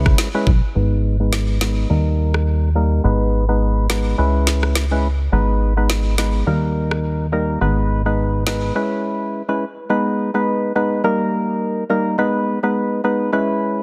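Tough and sultry, this dancehall cut from a longer piece rides a swung sixteenth-note groove in four. A hollow, organ-like stab carries the accompaniment throughout, its percussive, chorused tone shaped by a low-pass filter and a filter sweep across the first section. Beneath it, a plucky analog bass sits up front with a punchy, funky sawtooth bite and a moving notch, while an electronic island pop kit lays down a knocking kick, woody snare, rim clicks and smooth hi-hats. The harmony circles through C#m7, G#m and D# in a dark minor cycle. Bass and drums drop out at about 8.7 seconds for a short break, leaving the organ stab alone to carry the closing section until 13.8 seconds. Light reverb and a dense, heavily limited modern master keep the sound tight and forceful.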